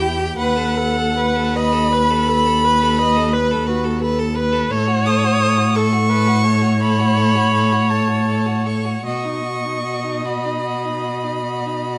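Serene and warm, this slow romantic movement for string quartet unfolds in 12/8 at roughly 49-58 beats per minute, phrased with rubato and tuned slightly low at A4 = 438 Hz. A single first violin carries the melody, its tone smooth and even with a close, rich vibrato. Beneath it, the second violin traces a clear, focused inner line, while the viola fills in the accompaniment with a full, centred sound. The cello anchors the bass and sits up front in the balance, its bowed tone velvety and steady. The harmony moves from B7/D# to F#m/A near 4.7 seconds and settles on B around 9.1 seconds, all wrapped in a moderate stone-room reverberation. This short passage is cut from a longer piece, and all four players sound throughout its twelve seconds.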